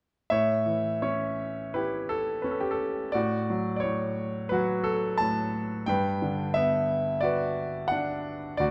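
A clear, smooth concert grand piano with a deep bass and a vintage, up-front character plays this sunny, lyrical classical solo excerpt at 88 BPM in a flexible rubato 4/4, moving from A7 to Dmaj7/A to Gmaj7 between 0.3 and 8.7 seconds within a moderate recital-hall reverb.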